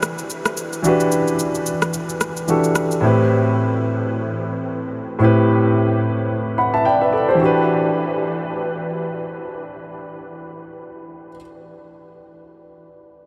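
A dreamy mix soaked in huge, wet reverb with an eight-second tail gives this fragment of late-night amapiano a deep mood. It moves at 110 BPM in 4/4 with a swung sixteenth-note feel, set in E minor. An intimate concert grand piano sits up front as the accompaniment, smooth and vintage in tone, with deep bass, audible action noise and a subtle chorus, spanning A2 to B5 across the full 13.3 seconds. An electronic, produced shaker and rim click play quietly beneath it, dropping out at 3.0 seconds to leave the piano alone. The harmony rests on Em9, moves to Am9, and returns to Em9 as the second passage begins at 7.4 seconds.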